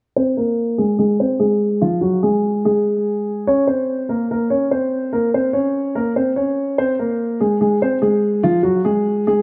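A half-time 4/4 feel at 145 BPM drives this tense, cold hip hop fragment, where a dark, boxy, intimate concert grand piano with audible action noise carries the melody up front from 0.2 to 9.4 seconds under a low-pass filter sweep, moving from a chordless opening to Bbm and then a rootless Fm inside a moderate scoring-stage reverb with small-room ambience.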